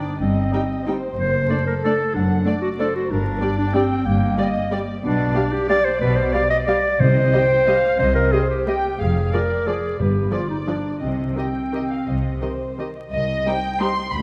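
A crackling, vinyl-toned recording set in a reverberant concert hall carries this bittersweet, dark fragment of classical music in 3/4, moving with rubato between 160 and 201 BPM from G minor into C minor at 5.0 s. Veiled, con sordino string sections carry it: violins sing the melody up high with a second violin line beneath, violas fill in the accompaniment, and cellos and double basses hold the bass with smooth-topped vibrato. A warm solo clarinet sits up front as a second line, while timpani on medium mallets sound briefly in the background at 7.0 s and 10.0 s.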